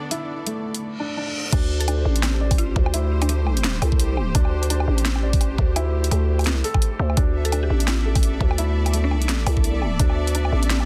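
Half-time drum and bass at 170 BPM with a swung sixteenth feel, this dark, cinematic excerpt opens with lush bowed strings holding sustained chords, pumped by sidechain, beneath a soft, felt-muted upright piano playing arpeggios through a digital delay as a filter sweeps across it. The drum kit enters at 0.1 s with a cracking snare, bright hats, crash, and woodblock, all overdriven and re-recorded in a small room, while an electronic reverse cymbal leads into the drop at 1.5 s. There an up-front growling, buzzy 808-style bass and a knocking, overdriven electronic kick arrive together, the kick dropping out at 10.1 s. A woody, round FM synth pluck sits in the background with chorus, 12-bit sampler grit, and delay, playing brief melodic phrases in two passages. The harmony moves from a rootless G69 over D to Dsus2 at the drop and Am11 later, all in a dry, dense, heavily limited modern master.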